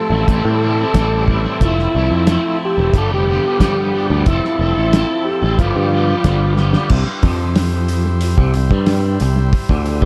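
Psychedelic rock at 91 BPM in C major, kaleidoscopic and hypnotic, in which a reedy, overdriven combo organ carries the melody with heavy vibrato and analog delay until 6.5 s, over a buzzy second combo organ holding sustained chords in the background, a twangy, double-tracked electric guitar riff run through a rotary speaker and delay, a round, punchy picked bass up front, and a cloth-damped, thuddy drum kit with dark cymbals, a fat snare and a tight kick whose fill hands the Am7–Fmaj7–G7–Fmaj7–G7 progression over to a C chord at 6.9 s, all in an echo-heavy mix with light studio reverb.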